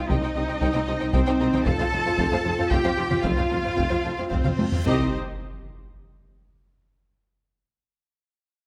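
Dramatic and relentless, this short cut from an epic orchestral film score in C minor moves at 113 BPM in 3/4, with a lush violin melody and a background violin second line over a rich, up-front cello section carrying the bass, an expressive viola section with portamento, a focused double bass section, a dark, distant French horn section holding sustained chords, a solo tuba, and a taiko ensemble struck with hard sticks in a small room, as the harmony moves from Cm to F and back before a reverse cymbal and drum fill at 4.5 seconds lead into a huge, dark impact at 4.9 seconds.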